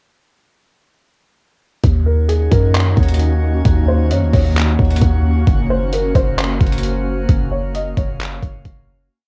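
Gritty, overdriven sampler-style drums with a thumpy kick, handclaps and fast hi-hat rolls play a sparse half-time beat at 132 BPM beside deep, boomy 808-style sub-bass notes that follow the kick with pitch slides, while a soft, boxy felt-muted upright piano loops a dark, intimate melody through analog delay and tape, an ethereal sidechain-pumped pad holds Ebm7 then Gb chords, and a faint glassy harmonics texture drifts above in this floating, blissful cloud-rap piece that fades out from 7.3 seconds.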